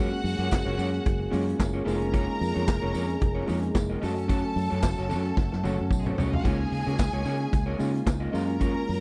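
Celebratory and danceable, this short disco excerpt swings lightly on a 4/4 groove, driven by a punchy, up-front vintage drum kit with dark cymbals, handclaps and a drum fill at 5.4 seconds. Under it sit a round, foam-muted fingered electric bass, and a background tambourine entering at 0.3 seconds alongside the kit. A reedy, lightly overdriven electric piano and a slightly broken-up electric guitar fill out the harmony, while a lush, focused string section with tape echo carries a second line over distant, soft-attacked French horn chords, all in a dry room.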